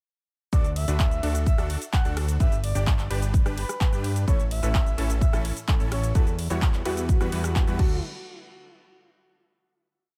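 A dry, punchy mix opens straight into an anthemic, triumphant festival progressive house drop in D major at 128 BPM, where a tape-warm four-on-the-floor electronic kick drives a big-room dance kit of metallic programmed hats, claps, rim clicks, shaker, ride and crash, under a fat, detuned analog bass pumping with the sidechain and locked to the chord rhythm, bright detuned supersaw stabs in dotted-rhythm chords with filter sweeps and delay, a breathy flute-like synth lead with chorus, tremolo and vibrato playing short answering phrases, and a clear, worn concert grand piano joining in the background at 4.3 seconds, before everything cuts to a final hit at 8.0 seconds.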